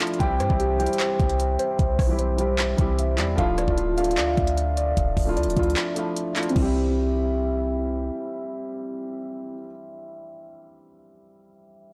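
A half-time trap beat at 151 BPM drives this wistful yet triumphant hip hop fragment in C major: an overdriven, up-front drum kit with a knocking kick, crisp hi-hats, handclaps, rim clicks and crash cymbal plays until 6.7 seconds, over a deep, boomy sine-based 808-style bass. Muted, intimate felt-like synth keys spin arpeggios through chorus and tape echo, while a boxy, mellow grand piano supplies dark accompaniment and carries on alone after the synth keys stop at 9.7 seconds, lasting to 11.9 seconds. The harmony moves between C and Dmadd9, and the whole mix is blown-out and overdriven, set in light digital ambience.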